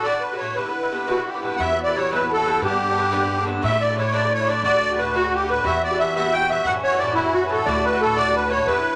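A reedy musette accordion carries the melody up front in this dark, wild and lively Celtic folk excerpt, its close-miked, dry and full sound shimmering with musette tuning. Beside it from the opening, an Irish bouzouki picks a bright, metallic accompaniment on double strings, also placed up front. A hammered cimbalom enters at 1.1 s with a ringing second line in the same register as the accordion, sitting in the background. At 1.6 s an upright bass joins with woody pizzicato on steel strings, anchoring the low end. The tune moves in a straight 6/8 through chords such as Emadd9, G, Asus4 and F#m7, all set in a wet studio reverb, and the passage is cut from a longer piece.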